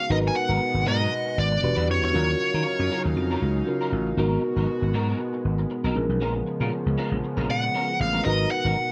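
A bright, overdriven lead guitar sings its melody over a mellow tine electric piano with lush chorus, a shimmering pulse-width pad and a slightly broken-up, compressed rhythm guitar riff, while a growly, punchy slap bass sits up front in this nocturnal, urban pop fragment at 118 BPM with a light 16th-note swing, moving through Abm9, Em9, Ebm9 and Bbm7 as the lead drops out at 3.0 seconds and returns at 7.5 seconds, with the lead, piano and pad bathed in plate reverb.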